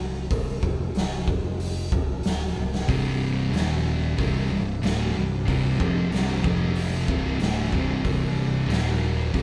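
A growly, overdriven fingered bass opens this brooding stoner-doom excerpt at 93 BPM in C dorian, joined almost at once by an oversized, low-tuned drum kit with a boomy kick and gritty, saturated tone, before two distorted fuzz guitars, one up front and one in the background, take up the riff at 2.9 seconds after a drum fill, and a very quiet, detuned, granular drone swarms in behind them at 4.6 seconds, all captured as a band playing live in one room with light reverb.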